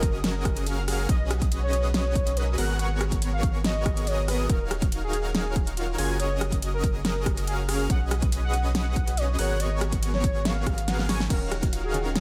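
Future bass at 141 BPM in a lush, emotional half-time feel with a light swing, cycling through Gbmaj9, B69, Abm9 and Ebm9. A velvety, chorused synth lead with tape echo carries the melody over a huge, detuned supersaw riff, an airy, dreamy arpeggiated lead in the background and a deep, saturated sub bass, each of them pumping against the sidechain, while a barely audible downlifter sweeps through the opening second. Up front, a punchy overdriven electronic kick and a pop kit with a fat snare, metallic hats, rim clicks and crash cymbal drive the groove in light reverb; the kick drops out at 10.9 s for a drum fill, and at 11.3 s a brilliant concert grand piano and a gentle, tine-like synth pluck arpeggio join near the end of this cut from a longer piece.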